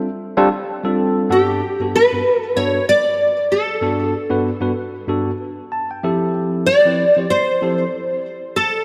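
Bathed in a lush hall reverb with a 2.7-second tail and a glossy 1980s-style digital sheen, this soaring, bright jazz fragment at 95 BPM swings lightly in G major as an up-front, clean tine electric piano, heard through a combo amp with subtle chorus, opens alone on G9sus4 before a fingerpicked classical nylon-string guitar with fresh strings takes the melody up front at 1.3 seconds, its acoustic tone touched with analog chorus over Gmaj9, while the piano adds a fill from 5.4 seconds and the harmony moves to Fmaj9.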